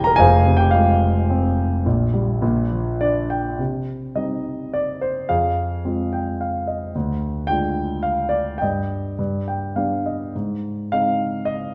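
A dark, mellow concert grand sits up front in a reverberant recital hall, its deep bass, short sustain and vintage character bathed in the room's wet ambience. This brooding, cool fragment of lyrical classical solo piano moves at 107 BPM in 3/4 with a free, rubato feel, opening on F minor and B-flat harmonies before settling into C minor at 3.6 s. From there it drifts through F minor, D diminished, E-flat and G toward A-flat, with piano fills appearing at 2.7, 5.9 and 9.2 s.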